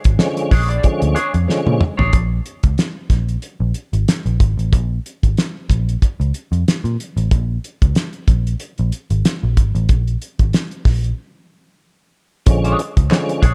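A cloth-damped drum kit opens this gritty, energetic funk cut at 93 BPM in 4/4, its fat snare, tight kick, toms and hi-hat sitting up front with a rolled-off top and a gentle 16th-note swing. A dark, foam-muted picked electric bass arrives almost at once, round and punchy, and carries on for the entire excerpt. Over a Bb7#9 chord, a clean picked electric guitar through wah and a full tonewheel organ stabbing with key click, chorus vibrato and a fast rotary speaker fill the opening bars before a drum fill at 1.5 seconds. The middle stretch is chordless, just drums and bass, and it winds into a break before guitar and organ return on the Bb7#9 at 12.5 seconds. A hollow, band-limited group handclap pops in briefly at 13.1 seconds, all set in a small room with a dark, warm production.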